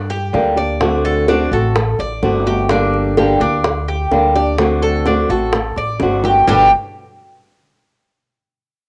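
Metallic, double-strung Cuban tres arpeggios sit up front with cassette-tape coloring and plate reverb, joined at 0.3 s by a fingerpicked flamenco guitar with fresh strings and the same treatment, over a woody, growly pizzicato upright bass and tight, high-tuned bongos played with soft hands in the background, in a nostalgic, warm Cuban son and guajira excerpt at 127 BPM in G harmonic minor that moves between Gm and D7 before a brief drum fill leads to a G chord at 6.5 s.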